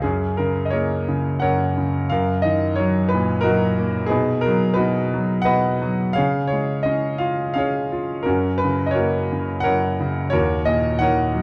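A bright, up-front grand piano sits in a moderate recital hall reverb, its natural, brilliant tone framed by a dark, warm production. This classical solo piano passage in F# major moves at 88 BPM in 3/4 with a rubato feel, tuned to A4 = 443 Hz. The piano plays alone from 0.0 to 11.4 seconds, ranging from D#2 to F#5 through a sunny, hopeful progression from F#add9 to D#m7, in a short section cut from a longer piece.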